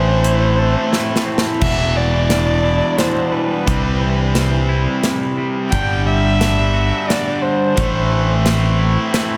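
Hopeful and soaring, this post-rock excerpt in 3/4 sets a dark, woody bowed violin melody with vibrato over a warbly, nostalgic tape-like pad, twangy background guitar arpeggios with subtle chorus and ambient delay, an up-front overdriven guitar riff and a growly picked bass, while a big rock drum kit with punchy kick and bright cymbals enters at 0.2 seconds and plays a fill before the shift at 1.6 seconds, all in a dreamy, reverb-soaked mix moving from Am through Em7, Cmaj7 and G5 back to Am.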